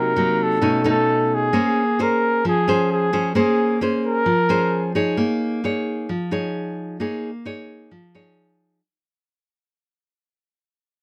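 Wistful and intimate, this short bossa nova fragment moves at 132 BPM in Bb minor, with a breathy flugelhorn carrying a jazz-style solo melody up front, its soft attack and light vibrato giving it a close, tender voice. A fingerpicked nylon-string guitar in classical style supplies the accompaniment on fresh-sounding strings, the occasional finger squeak caught by close, detailed microphones, through chords such as Cm7b5, B9 and Bbm9. The flugelhorn drops out at 4.9 seconds, leaving the guitar alone on Bbm7 as the music fades out from 5.2 seconds in a light reverb.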